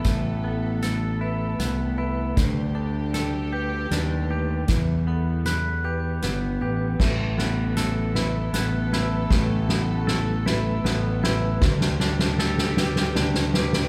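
A soft-mallet drum kit sits up front in this brooding, melancholic post-rock excerpt, its punchy kick, medium-tuned snare, hi-hat and crash cymbal struck with soft mallets and heard as one long build-up and drum fill across the full 13.9 seconds. Beneath it, a growling fingered electric bass, bright and overdriven, also pushes forward in the mix. A clean, compressed, twangy electric guitar picks arpeggios through the slow triple-metre passage, while a metallic vibraphone with medium hard mallets rings in the background with fast motor vibrato. A close, intimate chamber string section holds bowed, sul tasto chords with light vibrato and a soft attack, moving through Asus2, Dsus4 and Em. The ensemble sits in a moderate recital hall reverb with a 1.5-second decay, recorded in a church or concert hall.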